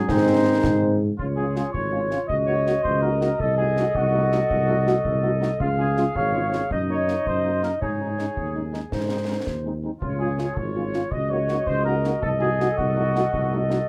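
In a straight 6/8 lilt at 109 BPM, this proud, rousing military-style march for wind band in Db major sets a mellow, distant trumpet section on the melody over French horn accompaniment with a smooth top, an up-front tuba bass with light vibrato, a roomy woodwind second line, concert snare and bass drum with dark cymbals, and a very quiet trombone section holding chords only from 0.1 to 1.0 seconds, all in light reverb, cut from a longer piece.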